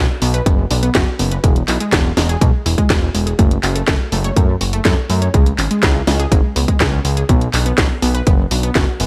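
A detuned, lush unison pluck spins tape-echoed arpeggios over a fat, nasal sawtooth bass from the start, moving through B5, Eadd9, F#m and C#5 in this bittersweet, danceable Italo disco fragment cut from a longer piece. A tape-warm house kit with handclaps, hi-hat and a cracking, up-front snare joins at 0.2 seconds, and a punchy electronic kick lands at 0.5 seconds. The dry mix carries a layer of vinyl crackle.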